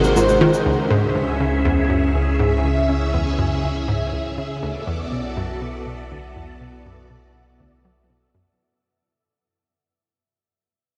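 Opening on a G#7 chord, a brief mellow octave-layered synth lead with chorus and tape echo and a quick burst of tape-warm cabasa and bongos give way by 0.6 s to this mysterious, cosmic piece of sequencer-driven ambient space music at 121 BPM in B dorian, where a swirling, up-front phased string machine holds sustained chords over a deep sine sub bass and a bright, detuned analog pluck riff with tape echo, an airy wind-like noise texture sits in the background, and the dreamy, cassette-toned, reverb-soaked mix fades out from 0.7 s as a filter sweeps the arpeggio sound through C#m and Bm7.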